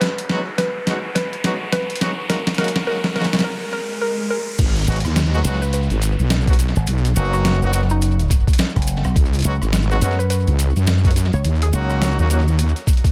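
Swaggering and gritty, this glitch hop cut from a longer piece struts at 105 BPM in G# minor with a swung 16th-note feel. A thumpy, compressed electronic kick sits up front beside a sampler-style boom bap kit of crash, hi-hat, rim click and medium-tuned snare, both re-recorded in a large room, while a woody, wave-folded pluck carries the melody through chorus and tape echo. Brilliant horn stabs with light vibrato and octave doubling arrive at 0.3 seconds, roughened by 12-bit sampler grit and sidechain pumping, as electronic risers and swells drive a build-up through a drum fill and a brief break. At the drop at 4.6 seconds, a heavy, detuned wobble bass pushes to the front and grainy maracas sit in the background, with a bright, punchy slap bass with an envelope filter joining up front moments later at 4.9 seconds. The chords move from G#m7 through Bmaj7 and C#7sus4 to D#m7, all in an echo-heavy mix with light reverb.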